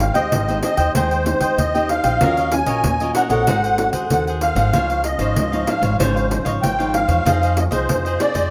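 A rough home-demo mix bathed in moderate plate reverb opens this yearning yet lively samba-choro excerpt, where a dark, shimmering musette accordion with reedy, wet tuning carries the melody up front over crisp picked cavaquinho, small fingerpicked nylon-string guitar, a growly, woody pizzicato upright bass with steel strings sitting forward in the mix, and a jingly pandeiro played with hard hands in a small room, all moving through chords from Abmaj7 to Fm7.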